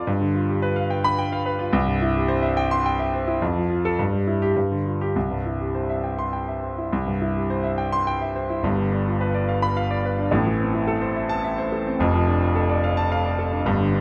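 A grand piano carries this classical virtuoso study alone, its warm, present tone placed up front with a long sustain that lets each chord ring. The mood is brilliant and heroic, moving in a flowing three-beat metre with a free, rubato feel. The piano spans a broad compass from F1 up to C6, filling both the deep bass and the bright upper register. The passage is cut from a longer piece and states its opening idea twice, with the repeat arriving at 6.9 seconds. The harmony moves from G7 to C and F, and later turns through Am toward Dm/F. Close, detailed miking and a nearly dry room keep the sound intimate and clear.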